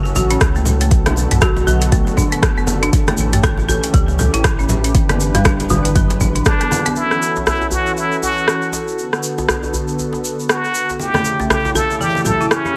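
Swung at 119 BPM in 4/4, this earthy afro house excerpt in F# phrygian rides an up-front overdriven electronic kick and an afro-pop kit with metallic hi-hats, rim clicks and toms, along with a tight, cracking djembe, distant congas and a grainy egg shaker, beneath a round sub bass, a woody hard-mallet marimba playing delayed, pumping arpeggios and a smooth, detuned sawtooth pad with chorus and tremolo, until a band accent at 6.5 s brings in a brilliant, forceful plunger-muted trumpet solo with wah-wah, vibrato and delay as the kick and sub bass fall away by 6.6 s.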